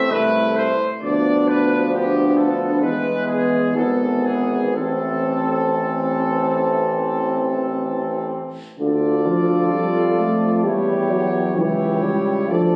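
Elegiac and yearning, this classical, hymn-like brass band piece moves slowly at 58-68 BPM in 4/4 with a rubato feel, starting in A minor before turning to D minor at 8.8 s. A warm trumpet section carries the melody over a distant, mellow flugelhorn second line with light vibrato, while a tight, vintage-toned trombone section sits in the background and a smooth-topped euphonium and clear tuba, both with light vibrato, supply accompaniment and bass. The sound has the moderate reverb of a scoring stage, picked up on a phone in the room with added studio reverb and compression, and the passage is cut from a longer piece.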